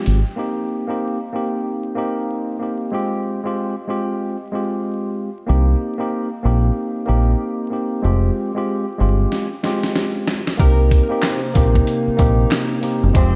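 A deep, round fingered electric bass sits up front in this dark, gritty boom-bap hip-hop excerpt, entering in earnest at 5.5 s at 94 BPM in C minor with a 62% swing on the sixteenths. Alongside it, a clean tine electric piano with a cassette-tape tint carries the accompaniment from the opening, cycling between Cm7 and Fmadd9 against a bed of vinyl crackle and light digital reverb. The dusty, sampler-style soul drum kit, compressed and re-recorded in a large room, comes in with a fill at 9.3 s, pairing a thumpy kick and fat snare with hi-hat and handclaps. At 10.6 s a new section opens: a hollow, flute-like pad with chorus returns in the background, a grainy tube shaker rejoins quietly, and a mellow vibraphone played with soft mallets rings out a short delayed melody. A clear saxophone section with vibrato adds delayed stabs further back in the mix, lending a smooth pop colour to the gritty groove.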